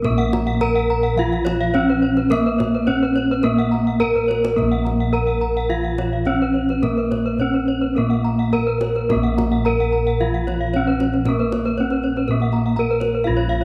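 Set in a moderate echo-chamber reverb with small-room ambience, this hypnotic, brilliant Balinese gamelan excerpt in Bb pelog moves at 106-125 BPM in a straight 4/4. An up-front, boxy bronze metallophone struck with a horn mallet carries the melody, while a close-miked, very quiet wooden-mallet metallophone plays a dry accompaniment and round, dark bossed gongs hold the bass. Two paired-tuned metallophones spin arpeggios above them, one smooth and shadowed, the other bright and airy from 0.2 s, all shimmering with beats, as a tight kendang in the background adds a drum fill at 4.1 s.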